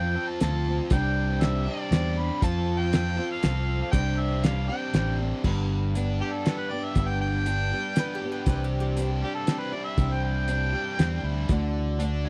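A dry, close 1970s-style studio sound frames this open-road folk and heartland rock piece in 3/4, where a mellow, vibrato-laden harmonica carries the melody and takes a solo from 5.4 s over picked parlour acoustic guitar, a biting, double-tracked overdriven electric riff, round fingered bass and a cloth-damped, thuddy drum kit with a fat snare and dark cymbals, while a mandolin with doubled strings adds a brief second line at 8.0 s.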